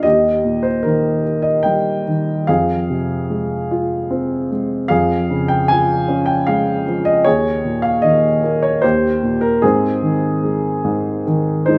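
Peaceful and warm, this short classical passage for solo grand piano moves in a lyrical, rubato 3/4 at around 75 BPM, tuned slightly high to A4 = 441 Hz. The dark, mellow piano sits up front with long sustain, spanning Eb2 to Ab5 in a moderate recital hall reverb. Its harmony drifts from Eb through Fm, Db/F and Ebsus4, returning to Eb before arriving on Ab at 9.6 seconds, as the fragment is cut from a longer piece at 11.8 seconds.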